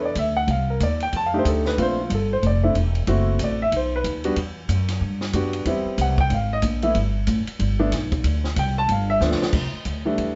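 Swinging and warm, this short jazz piano trio fragment sets a dark, mellow grand piano soloing up front over woody pizzicato upright bass, while a compact cocktail kit with dark cymbals, a high-tuned snare and a punchy kick sits lower in the mix and drops in a fill at 9.2 seconds, all heard from further back in a moderate studio room with a softened top end.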